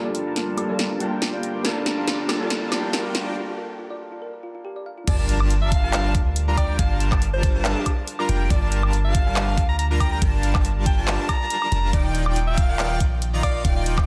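A clear jazz-style alto saxophone with scooped notes takes the melody from 5.1 s in this lush, emotional future bass cut in G minor at 140 BPM with a swung half-time feel. It follows a build-up where a soft, felt-muted upright piano with audible action noise and vintage sampler grit, a round, tine-like synth pluck playing background arpeggios and a smooth, detuned supersaw riff under a filter sweep play over a big-room drum fill with punchy snare, handclaps, hi-hat, woodblock and crash, along with a faint riser and sub drop and a brief break. The drop then brings a knocking electronic kick, a deep, boomy 808-style bass up front and an airy, bright lead with vibrato in the background, while the supersaw, saxophone and lead pump with sidechain and tape echo over a Gm7 to Ebmaj7 change in a dreamy, reverb-soaked mix.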